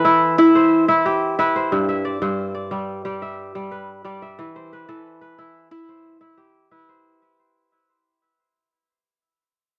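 A solo kora sits up front in this short fragment of a longer west african traditional piece, fingerpicked with a bright, ringing, crisp acoustic tone that spans from G2 up to E5. The mood is joyful and warm, moving at 90 BPM in a straight 4/4 feel, with the tuning set slightly low at A4 = 437 Hz. The harmony is simple, starting on Em, shifting to G at 1.7 seconds and returning to Em at 4.4 seconds. Tape echo and a cassette tape character color the kora, and a light studio reverb surrounds it, giving the home cassette recording an intimate, lived-in quality. A fade-out runs from the start through 7.1 seconds, and the kora carries on alone until 8.3 seconds.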